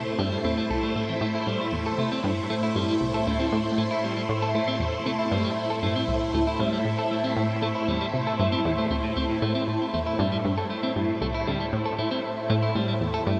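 A reverb-soaked, dreamy haze opens this short excerpt of expansive, hypnotic sequencer-driven space music in A minor at 117 BPM, where a bright, swirling phased string machine holds slow-blooming vintage chords up front over a round, detuned analog pluck riff with tape echo, joined at 0.2 seconds by clean, compressed electric guitar arpeggios softened by a low-pass filter and trailing echoes.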